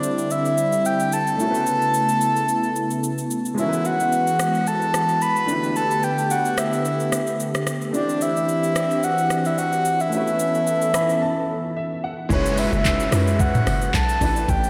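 Soaked in lush hall reverb, this dreamy, hypnotic late-night amapiano excerpt at 110 BPM in F# phrygian floats a breathy, flute-like synth lead with tape echo over a natural baby grand piano accompaniment, a smooth, detuned sawtooth pad pumping with sidechain until 12.3 s, and a produced R&B kit of knocking kick, metallic hats, handclaps, rim clicks, shaker and toms, with a piano fill at 10.7 s and a brief break before the drop at 12.3 s brings in a hollow, bouncy log drum bass and a background downlifter.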